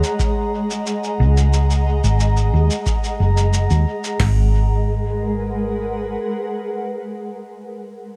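Set in a lightly reverberant space, this meditative, deep ambient dub fragment moves at 90 BPM in G# minor, opening on a G#7sus2 chord that shifts to G#m9 at 4.2 seconds. A blurred, detuned granular cloud pad holds mellow sustained chords up front, while a muffled, pitched-down shaker is treated with dub echo and a faint, glassy sine texture with chorus drifts in the background. A booming analog drum machine with a deep kick, crisp snare and crash cymbal sits forward until 4.4 seconds, and a round, hollow-body fingered electric bass, dark and amped with tube saturation and a filter sweep, enters at 1.2 seconds to carry the low end.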